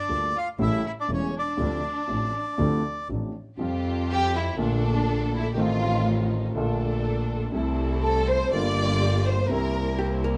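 Tango in a rubato 4/4, dramatic and tense, cut from a longer piece. A reedy, dark bandoneon carries the melody up front in the opening seconds, while a lush, expressive violin section bows a second line with vibrato beneath it. A concert grand piano with deep bass supplies the accompaniment, and a smooth, even double bass, a single bowed player sitting close, anchors the low end. At 3.6 s the music moves into its second section and the violins take a solo turn, with a focused string section adding stabs that have a smooth top. At 10.0 s a clean, compressed electric archtop guitar picks a brief hollow-body line, and light reverb gives the whole a modest sense of space.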